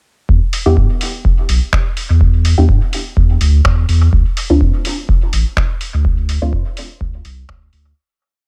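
Hazy and hypnotic, this short dub techno piece moves at 125 BPM in 4/4 with a light swing on the sixteenths, set in E phrygian and tuned slightly below standard pitch. A deep, overdriven electronic kick sits up front with a four-on-the-floor pulse, joined by a muffled, pitched-down sampler-style kit of finger snaps and hi-hats whose programmed backbeat is soaked in dub echo. The round sine sub bass plays a syncopated riff between A1 and G2, pumping through sidechain compression. Sparse, filtered chord stabs built from detuned sawtooth and square waves with a sub octave move one shape in parallel, phased and echoing as they shift from Em7 to Dm7 at 4.1 seconds. The whole groove sits in an echo-heavy digital ambience and fades out from 5.4 seconds to the close at 8.0 seconds.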